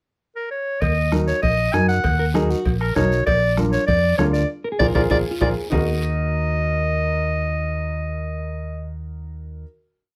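This is a fiery, driving cumbia in Eb harmonic minor at 196 BPM, a complete short piece that opens with a clarinet pickup at 0.4 seconds before the band enters. The bright, classical-style clarinet leads up front with hook-like motif phrases. A round, punchy fingered electric bass carries the cumbia bass figure alongside it, while a woody upright piano with long sustain plays rhythmic triad chords. A dark, clean electric guitar sits in the background, filling the melody's rests with answering phrases. The percussion bed is a soft-beater bombo with rim in a live room, ringing, saturated congas played off-beat, compressed metal-shell cowbell and timbales, and a raspy, dry guiro. A drum fill and band accent build into a held Ebm final chord, with the percussion stopping at 5.8 seconds and the bass, piano and guitar ringing on until 9.6 seconds under light reverb.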